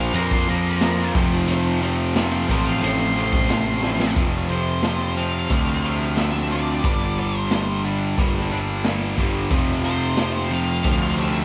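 Quiet-loud alternative rock with a brooding, angsty mood, moving at 90 BPM in a straight 4/4 through Bb, F and Gm. A dark octave-fuzz lead guitar solos over a thick fuzz riff, an up-front tight distorted guitar, a very quiet, twangy twelve-string playing arpeggios and a fuzzy, overdriven picked bass, while a gritty garage drum kit with a boomy kick and pumping small-room sound plays a fill at 3.8 seconds into the second section. The thick fuzz guitar drops out at 4.1 seconds and returns at 9.5 seconds, and the whole home recording carries a saturated cassette-tape character in this cut from a longer piece.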